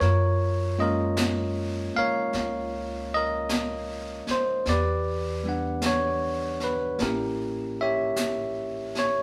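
A live, one-room studio sound with moderate reverb frames this smoky, melancholic jazz ballad fragment in swung 4/4, where a bright, bell-like tine electric piano sits up front over woody pizzicato upright bass and a natural-sounding brush kit of high-tuned snare, brushed snare and hi-hat, moving through F#maj7, Em7 and A7b9.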